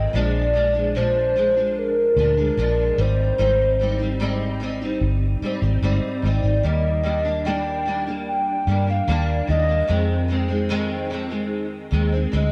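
A hollow, woody synth lead with a clarinet-like voice carries the melody across a span of Bb4 to G5, its soft, detuned tone thickened by lush chorus and a slapback echo. This laid-back, dreamy slice of indie and bedroom pop moves at an unhurried 74 BPM in 4/4 with a straight feel, in Eb major. A picked steel-string acoustic guitar sits up front in the accompaniment, its finger squeaks audible, with ensemble chorus and a vibrato effect adding a gentle waver. Beneath them, a vintage muted fingered electric bass gives a round, foam-muted low end. The harmony drifts from Bb7 to Abmaj7, then Ebmaj7 at 6.6 seconds and Fm7 near the close, all three parts playing throughout the 12.5-second clip cut from a longer piece. A moderate plate reverb and a dark, warm production wrap the whole in a hazy glow.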